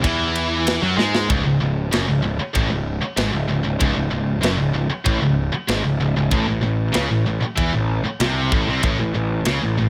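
An up-front, growly fuzz bass with overdrive drives this dark, epic heavy metal excerpt in C# harmonic minor at 96 BPM, joined by a tight, gritty drum kit with kick, snare and ride, two bright high-gain guitar riffs in the background (one scooped) and a very quiet double-tracked distorted guitar that drops out at 1.3 seconds after a drum fill, as the harmony moves from a rootless C augmented chord to C#5 and then A5 at 6.3 seconds in studio reverb.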